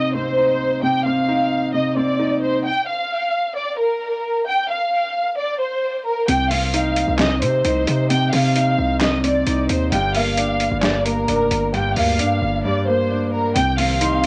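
A lush, vibrato-rich violin section carries the melody over a deep, up-front grand piano, both muffled by low-pass filtering and cassette-tape grit, in this dark, eerie half-time trap excerpt in C minor at 132 BPM; the piano drops out at 2.7 s so the strings hang alone until 6.3 s, when it returns alongside a heavy, aggressive distorted 808-style bass and a gritty, compressed sampler-style kit of handclaps, hi-hat and snare, and in the final moments an ethereal, phaser-washed pad and a single breathy, unsteady flute note surface in the light reverb of a home cassette recording.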